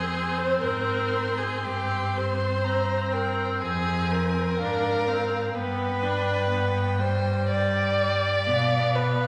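Elegiac and solemn, this slow romantic movement for string quartet moves at 61 BPM in 4/4 with a rubato feel, a brief fragment of a longer piece in which all four bowed players sound together from 0.0 to 9.3 seconds over a progression of Fm, C5/G, Fm and G7. A warm, close first violin sings the high melody with vibrato and portamento, sitting a little lower in the mix than the dark, soft-edged second violin, whose expressive inner line comes up front. A clear, intense viola plays distant accompaniment, and a rich, focused cello with a smooth top anchors the bass up front, all wrapped in a wet concert-hall reverb lasting 1.7 seconds.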